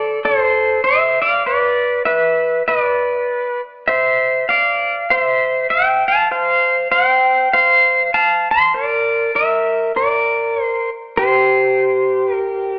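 Dreamy and sunny, this short Hawaiian fragment, cut from a longer piece, drifts along at 99 BPM in 4/4 with a gentle swing on the eighth notes, centred in F major and tuned slightly below standard pitch at A4 = 436 Hz. A solo electric pedal steel guitar carries the whole 12.8 seconds, ranging from G4 to C6 and sitting up front in the mix. Its tone is clean, compressed and twangy, picked with fingerpicks, with gliding slide work and volume swells giving the lines their floating quality. The harmony moves from Amadd11 through Cadd9 to F, with open stretches where the chords drop away and the steel hangs alone. A lush echo chamber reverb with a 1.9-second tail surrounds the instrument, while an AM radio coloring lends the whole recording a vintage, broadcast-from-afar character.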